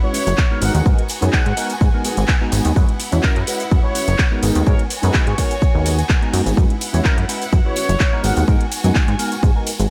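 This is a feel-good, joyful slice of filtered disco house from a longer piece, running at 126 BPM in 4/4 with a light 16th-note swing and tuned slightly sharp to A4 = 441 Hz. The harmony alternates between F#7sus4 and G#m7. A clear, classical-style trumpet section carries the melody over a worn, slightly out-of-tune electric piano played through a combo amp with phaser, while a rich, distant violin section holds sustained, vibrato-laden chords. A dark, fingered electric guitar riff sits in the background with vintage 12-bit sampler grit, and both it and the trumpets drop out at 8.4 seconds. Underneath, a funky, sawtooth-and-pulse analog bass with a snappy filter pluck sits up front, joined at 0.4 seconds by a punchy, tape-tinged electronic kick. A house kit of handclaps, metallic hi-hats, ride cymbal and shaker, plus a small-room tambourine, fills out the groove, and every part except the kick pumps to the sidechain beneath a light reverb and digital ambience.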